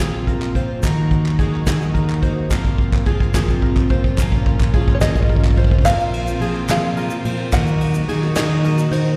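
Indie folk in a straight 6/8, yearning and stirring, this passage builds steadily as a shimmering, octave-doubled twelve-string acoustic guitar and a light fingerpicked ukulele, both touched with slapback echo, ride over floating, distant bowed strings and a warm fingered electric bass. A soft brush kit sits up front with a fat snare, tight kick and dark cymbals, rolling through a fill during the build-up to 5.9 seconds, while crisp group handclaps and a grainy egg shaker stay in the background. At 4.9 seconds a twangy, plunky open-back banjo enters with a high fingerpicked melody, and the whole performance sounds like a live gig heard through a venue's PA, bathed in recital hall reverb.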